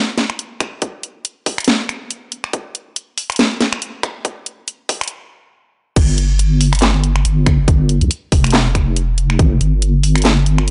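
A half-time groove at 140 BPM in 4/4, swung 56% on the sixteenths, drives this heavy, cavernous deep dubstep excerpt. A garage drum kit enters at 0.2 s with a cracking snare, hi-hat, handclaps, finger snaps and crash cymbal, its layered, produced sound carrying a tape-warm tint. Up front beside the kit is a tight electronic kick, re-recorded in a large room and high-pass filtered. The build-up halts in a stop at 5.1 s, and the drop lands at 6.0 s with a deep, soft wobble bass moving between F1 and C2. Its wobbling tone blends triangle and sine shapes with a fast attack, held sustained and compressed, with chorus thickening its dark weight. The recording has a dry, gritty hardware character in a digital ambience, with nothing above 10.8 kHz.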